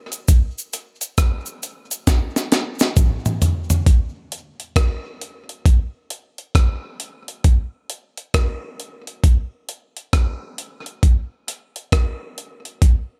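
A slow 67 BPM reggae groove in 4/4 with a 64% 16th-note swing drives this spacious, heavy excerpt, where a gritty, compressed breakbeat sampler-style kit with a thumpy kick, medium-tuned snare, rim click, hi-hat and toms sits up front throughout, joined at first by a close, acoustic cabasa with tape echo that drops out at 3.9 s as a drum fill ends, leaving the kit alone in a dry room.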